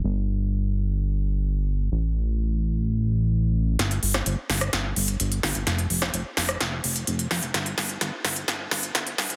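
The sound is dry and dense, with a heavily limited modern master that keeps the low end tidy. This short cut of festival progressive house runs at 128 BPM in a straight 4/4 and carries an anthemic, triumphant mood. A fat analog bass opens alone and holds the floor throughout, its detuned sawtooth tone thick and saturated, with a plucky filtered attack that sustains and evolves low in the register. At 3.8 seconds a big-room dance drum kit arrives up front, its layered electronic sound tape-tinged and re-recorded in a large room, with a punchy snare, crisp hi-hats and a rim click. From that point until 9.4 seconds the track turns into a build-up, driven by a drum fill and a filter sweep.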